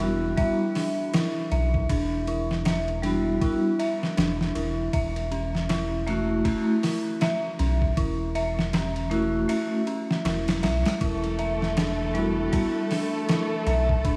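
Trip hop at 79 BPM in E dorian with a brooding, melancholic swing, built on a gritty, pitched-down boom bap kit with a thumpy kick, a round, nasal analog bass with tube saturation, eerie, warbling FM synth bell arpeggios through chorus and tape echo, and metallic vibraphone accompaniment with harmonic tremolo that stops at 12.8 seconds, while the kick drops out from 9.5 to 11.0 seconds and a rich, bowed chamber violin section enters at 11.0 seconds with sustained chords, the whole mix soaked in dreamy plate reverb and vinyl crackle.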